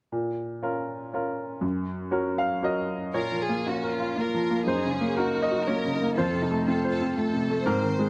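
Neoclassical piano and strings in Bb minor, this short excerpt cut from a longer piece moves in a rubato 3/4 at 120 BPM with a fragile, reflective mood. A clear grand piano opens alone at 0.1 seconds, its worn, natural tone sitting up front as it carries the accompaniment through the Bbm and Gb harmonies. At 3.2 seconds a chamber violin section enters with the melody, bowed with vibrato and sounding focused and smooth on top. A single bowed cello joins at the same moment on a second line, its woody, shadowed voice with vibrato kept in the background beneath the violins. The harmony returns to Bbm, passes through Gb and arrives on F, while the close, detailed miking and minimal reverb leave the instruments intimate and dry.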